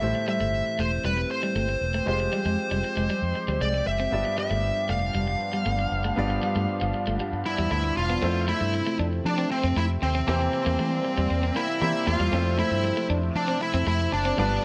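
A straight 4/4 pulse at 117 BPM drives this uplifting, glossy pop excerpt, moving through Am7, Fmadd9 and G7 before shifting at 8.2 seconds to a passage built on Fmaj7 and C7/E. Up front, a smooth, overdriven lead guitar carries the melody with delay. A dark, round, punchy muted electric bass sits equally forward beneath it. A clear grand piano supplies accompaniment, while a second electric guitar, picked and compressed at the edge of break-up, plays a riff coloured by lush chorus and delay. In the background, a sawtooth pad with a resonant filter swell and a slow attack holds sustained chords through chorus and phaser. At 7.5 seconds a bowed studio violin section enters softly with a second line, smooth and even with vibrato and touched by delay, all within a moderate recital-hall reverb.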